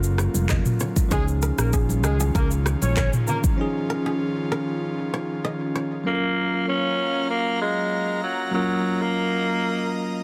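A dense, heavily limited modern master with light reverb and a small room ambience frames this sunny, joyful afrobeats fragment in F# major, moving at 97 BPM in a straight 4/4 and cut from a longer piece. A bell-like, bright tine electric piano and an airy, soft pad with chorus sustain the F#maj7 and C#add9 chords throughout, while an up-front round fingered bass and a produced afro-pop kit with a deep kick, handclaps, rim click, shaker and toms drive the opening beside very quiet, damped congas. A fingerpicked, ringing kora riff carries a tape echo, and a mellow, distant horn section adds a brief punchy second line in pop style. The bass, drums and congas have fallen away by 3.6 seconds, opening a break where the electric piano, pad and kora hold the harmony. At 6.1 seconds a growling, raspy alto saxophone takes the lead up front, its gritty, vintage tone and vibrato giving the final passage a soulful edge over the shimmering chords.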